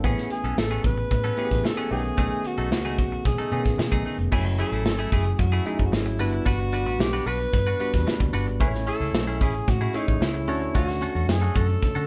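A polished, live-in-one-room sound with moderate studio reverb frames this breezy, upbeat 1980s jazz-funk pop fragment at 112 BPM in straight 4/4, cut from a longer piece. A tight, up-front acoustic drum kit with crash, hi-hat, kick and a medium-tuned snare plays alongside a dark, foam-muted, punchy fingered bass, while a barky tine electric piano, lightly overdriven through a combo amp, and a clean, compressed semi-hollow guitar riff sit beneath. From 0.3 s a close-miked, breathy alto saxophone carries the melody in an intimate jazz style with vibrato, subtone and scooped notes, over chords moving from Amaj9 and B13 into F#m9, Gmaj7, Amaj7 and Dmaj7.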